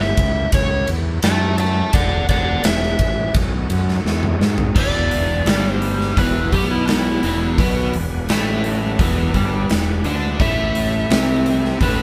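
Driving and swaggering, this passage from a longer piece is blues rock with a southern rock edge, played by a band live in one room with light reverb. A dark, overdriven slide guitar carries the melody and takes a solo from the start until 4.8 seconds, over chords moving from A7 through E7 to B7. Underneath, a fingered electric bass sounds round and fuzzy, while a huge arena drum kit sits up front with bright cymbals, a punchy kick and a medium-tuned snare, playing a fill at 4.1 seconds. At 4.8 seconds a double-tracked, picked electric guitar enters up front with a bright riff, as the harmony returns to E7 and later lands on an A5 chord. Throughout, a very quiet tonewheel organ holds thick, gritty sustained chords through a fast rotary speaker, with chorus vibrato and a percussive second-harmonic attack.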